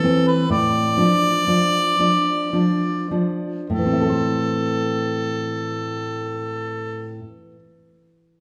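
Solemn and elegiac, this short excerpt from a longer romantic duo pairs harmonica with classical guitar in a slow, rubato 3/4, moving between 49 and 67 BPM in A minor. The harmonica carries the melody up front in a classical style, its tone warm as it sings within a narrow range from A4 to D5 until 7.2 seconds. Beneath it, the nylon-string guitar provides a full-bodied, deep accompaniment, thumb-plucked with an audible finger squeak, reaching from A2 up to C5 and ringing on to 7.6 seconds. The opening passage slows down over its first 3.7 seconds, resting on a Dm/A chord, before the second passage settles onto A minor at 3.7 seconds. A wet recital-hall reverb with a 1.6-second decay surrounds the pair, giving the playing the resonance of a church or concert hall.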